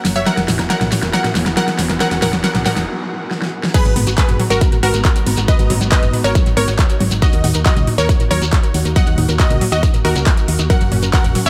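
A straight 4/4 pulse at 138 BPM drives this euphoric, bittersweet uplifting trance excerpt in G# minor, where a build-up with drum fills from the overdriven big-room kit, a very quiet riser and noise sweep, and a brief break give way at 3.7 seconds to the drop, led by a punchy, up-front electronic kick. A bright, detuned unison pluck carries the melody with delay and sidechain pumping, shadowed by a very quiet supersaw stab, while a chorused analog pluck spins arpeggios and muted con sordino strings hold veiled chords in the background over a round, dark FM bass. Metallic hats, a huge snare, handclaps and toms fill out the kit alongside a grainy shekere, as the harmony moves from Eadd9 through G#m7 and D#m to F#, all under light reverb.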